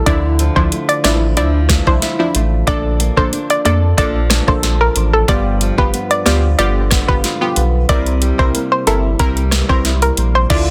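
A dense, heavily limited modern mix with little reverb opens this hypnotic, sultry dancehall excerpt at 92 BPM in a straight 4/4. A deep, thick, saturated triangle-wave sub bass sits up front from the very start, alongside a fingerpicked acoustic flamenco guitar playing arpeggios lower in the mix, its finger squeaks audible. An electronic afro-pop drum kit, re-recorded in a large room and placed up front, brings a knocking kick, a sharp snare, metallic hi-hats, rim clicks and a crash cymbal. A hollow, nasal, detuned square-wave pluck carries the melody with chorus and tape echo, while punchy, bright chord stabs with chorus move from Dmadd9 through Bbmaj7 and G7 to C7. At 10.5 s a glassy FM pad enters, barely audible, just before the cut.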